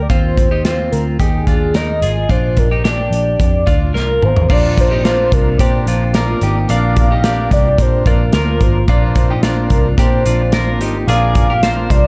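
Youthful and breezy, this jangly indie pop piece at 109 BPM in 4/4, cut from a longer work centred on Ab, pairs a velvety sawtooth synth lead with chorus and digital delay against twangy, bright twelve-string electric guitar arpeggios with spring reverb. Underneath, a round, foam-muted vintage electric bass and a punchy, up-front modern studio drum kit in a pumping room drive things along, with a drum fill at 3.9 seconds leading into a new section at 4.5 seconds. There, a buzzy combo organ with light vibrato and a slightly broken-up electric guitar through a small old amp, lush with chorus and sitting in the background, join the dark, warm mix.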